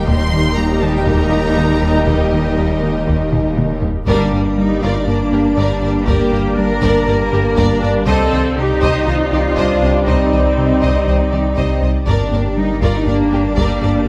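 Lush bowed cellos anchor this tense, futuristic hybrid orchestral and electronic film cue, cut from a longer piece, alongside a very quiet double bass section, a deep sine sub bass and a dark analog bass riff with a moving notch, while a mellow, distant tuba holds the bottom until 3.8 seconds. Above them a vibrato-rich violin section carries the melody until 3.5 seconds, as a focused second violin line and clear viola accompaniment join vintage-toned French horns in the background and a pure, wave-folded organ-like pad with ensemble chorus, the horns and pad sustaining the harmony over gentle, tine-like FM plucks playing arpeggios. A very quiet, saturated taiko ensemble played with hard sticks leads a drum fill into a band accent at 4.1 seconds, where a bright trombone section enters with sustained chords, set in a moderate concert hall reverb.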